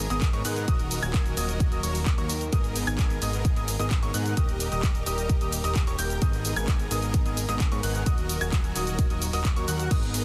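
A punchy, tape-tinged electronic kick sits up front through this powerful, anthemic festival progressive house excerpt, with a layered big-room drum kit of crash, handclaps, hi-hat and shaker set in studio reverb. A huge, detuned supersaw riff and bright, brilliant grand piano arpeggios both carry digital delay and sidechain pumping, over a fat, thick analog bass that pumps in the same way. A smooth, rich bowed string section holds sustained chords in the background, moving between G#madd9 and D#m with a brief turn to D# major midway, all in a dense, heavily limited master.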